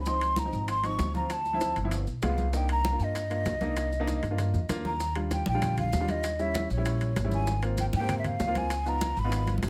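A driving straight 4/4 groove at 194 BPM sets up this sophisticated Afro-Cuban jazz passage, cut from a longer piece, moving from C minor to Eb major at 5.0 s. The upright bass sits up front, plucked and growly with a woody bite, while a clear, present upright piano comps through lush harmonies such as Dbmaj7, G7b9 and Ebmaj7 with short-sustaining chords. Above them a breathy, hollow metal flute carries the melody from a distance, its tongued attacks showing a soft chiff and gentle vibrato. The percussion bed blends bright, thin-skinned congas in the background, very quiet low-tuned bongos played with soft hands, ringing dry timbales and grainy maracas, with a drum fill from 4.1 to 5.0 s leading into the second section. Close, detailed miking with light reverb keeps the ensemble intimate and crisp.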